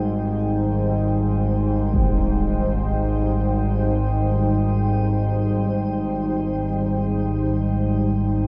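An up-front analog drone, warbling and vintage with a slow attack and chorus, anchors this desolate, cavernous dark ambient fragment beneath a bright, detuned sweeping pad held in sustained chords under shimmer reverb, while a barely audible bronze singing bowl rings with slow metallic beating and a huge, muffled impact lands in the background at 1.9 seconds, all within a wet cathedral reverb.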